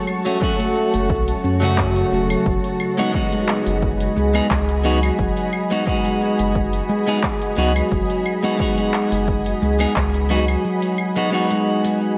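This is a mystical, meditative stretch of organic downtempo with a gently swung sixteenth feel, cut from a longer piece. It opens on a cloudy, granular pad of detuned sine and sawtooth voices, slow to bloom and bright at the top, holding sustained chords that breathe with sidechain pumping and trail off into shimmer reverb. An overdriven deep house kit of claves, handclaps, hi-hat and shaker arrives almost at once, followed by a clean, twangy electric guitar placed up front and dressed in lush chorus, delay and shimmer. A soft, ringing steel handpan played with the fingertips spins arpeggios through delay, while a punchy, layered electronic kick and a round, tube-saturated sub bass settle underneath. The harmony moves from F#m to G#m7 over F#, the kick drops out at 10.6 seconds, and a concert-hall reverb with a dark, rolled-off top end holds it all in a soft haze.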